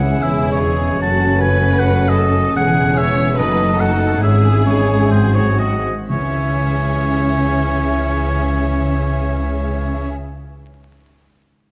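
Vinyl crackle sits beneath a close, detailed recording with light reverb, and this short orchestral passage has a stormy, restless mood. The rubato feel slows between 1.8 and 6.1 seconds, carrying the harmony through a chain of shifting chords before the music reaches its second section. Dark, woody violins carry the melody, while a second, more distant violin line and a vintage-toned solo oboe weave supporting lines above sustained chords from a roomy French horn section. Violas, rich and intense with a smooth top, fill in the accompaniment, and a concert harp rings out faintly in fingerpicked arpeggios. Bowed double basses and expressive cellos anchor the low end, and at 6.1 seconds very quiet timpani with hard mallets and calf heads join in.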